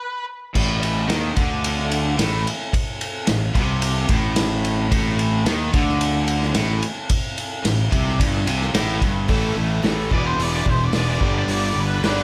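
A punchy vintage drum kit sits up front in a small, pumping room with dark cymbals, kicking in at 0.6 s alongside a growly fuzz-overdriven fingered bass, just after two crunchy overdriven guitars start riffing in the background at 0.5 and 0.6 s, one mellow and one bright, over a Gsus24 chord in this confident, sunny classic rock excerpt at 110 BPM in a straight 4/4. At 9.3 s the harmony moves through A, E and G as a boxy, parlour-style picked steel-string acoustic guitar joins quietly. At 10.1 s an octave-fuzz lead guitar, heard only in a brief flash at the very start, returns with a distorted, shadowy tone colored by wah and slapback echo, all under a light reverb.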